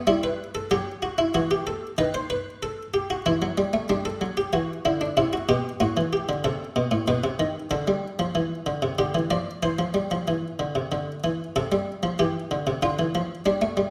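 A lone harpsichord with its buff stop engaged opens this short baroque-style two-part invention, its muted, lute-like tone sitting up front and close to the ear. The mood is stately yet lively, moving at 94 BPM in a straight 3/4 and set in E minor at the start. The instrument is the only voice throughout, covering a range from A2 to D5 with a full, plucked Italian-style character. Around 3.9 seconds a contrasting section begins, and the key turns to C major from 7.7 seconds before the opening material returns at 11.5 seconds. A stone room reverb surrounds the dry, close sound of the instrument, and the recording is cut from a longer piece, stopping at 13.9 seconds.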